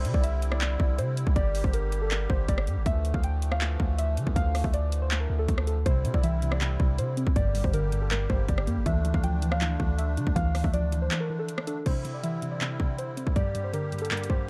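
Trap hip hop in a melancholic, menacing half-time feel, where muted, felt-like synth keys with chorus carry the melody over reedy, shimmering musette accordion chords, a deep, mellow 808-style bass and an up-front, overdriven trap kit with a hard-clipped kick and bright hats, while a soft, round pluck with chorus joins at 5.9 seconds and a brief break at 11.1 seconds drops the bass before the dark, dry production moves into its closing section.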